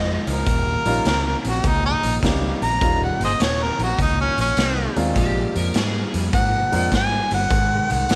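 Electric blues shuffle at 102 BPM in Eb, soulful and gritty, where an up-front harmonica with overdrive leads in a jazz style, full of vibrato, tongue slaps and scooped notes, over a raw garage drum kit with a punchy kick, a medium-tuned snare and a saturated, pumping room sound, a round, foam-muted fingered bass, a dark, slightly broken-up guitar riff with spring reverb sitting in the background, a woody upright piano with audible action noise that enters at 0.9 s, and a fingerpicked slide guitar that sounds briefly at the very start and returns at 5.2 s as the harmony moves from Eb7 to Bb7.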